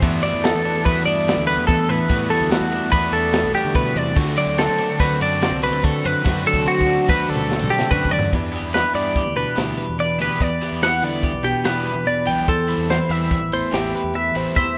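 A rough home-demo mix with light reverb frames this restless, intricate cut from a longer math rock and midwest emo piece, moving in a straight 5/4 at 144 BPM in E minor. A bright, compressed twelve-string electric guitar spins clean, picked arpeggios high in its range, while a second, twangy and up-front twelve-string electric guitar plays accompaniment across a broader span beneath it. Further back, a double-tracked, overdriven stack guitar carries a picked riff, and a growling, punchy fingered bass with overdrive anchors the low end. The crisp fusion drum kit sounds airy and polished in a studio room, with dark cymbals, a medium-tuned snare and a tight kick, and it plays a fill from 6.2 to 8.3 seconds. That fill leads out of the opening section, which moves from Em11 to D7, into a second section at 8.3 seconds that shifts to Em7 and then C6.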